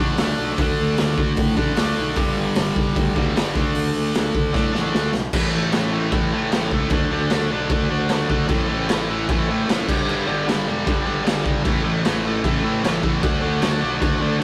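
A straight 4/4 punk rock drive at 152 BPM sets an upbeat, energetic mood, with a raw garage drum kit coming in at 0.2 s with its boomy kick, medium-tuned snare, hi-hat and dark crash cymbals, sounding gritty and up front in a small, pumping room, and playing a fill from 4.5 s that leads into a new section at 5.3 s. A bright, double-tracked distorted guitar riff drives overdriven power chords through D5, G5 and A5, over a growly fuzz bass. The whole excerpt has a rough rehearsal-room sound, with light reverb and warm saturation.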